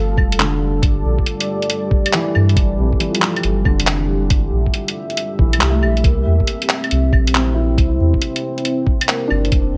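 Swung sixteenths in 4/4 drive this ghostly, melancholic future garage fragment, where a muffled, thumpy, pitched-down kick and a lo-fi sampler-style kit of claves, handclaps and hi-hat enter at 0.2 s in a small room ambience, the kit sitting up front. Beneath them a round, soft dub sub bass with tube saturation pumps against the beat alongside a moody, warbling pad of detuned, chorused chords and a boxy, felt-muted upright piano trailing dub echo. The harmony rests on Gmadd9 before shifting to C at 6.0 s, all inside a light digital reverb, in a short cut from a longer piece.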